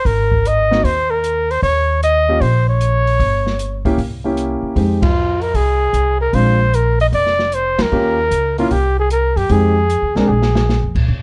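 Small-group swing and bop jazz in Eb mixolydian, relaxed and warm, this short cut from a longer piece swings at 152 BPM in 4/4. A close-miked, vibrato-laden flugelhorn carries the solo melody up front with plate reverb, over woody, thumpy pizzicato upright bass on gut strings and an intimate concert grand whose action noise and long sustain color chords such as Abadd9, C7b9 and Bb9. A small-room drum kit with dark cymbals, a boomy kick and a rolled-off top supports the band accents at 5.0 and 7.7 seconds and plays a brief fill at 10.3 seconds, all within a dark production and light reverb.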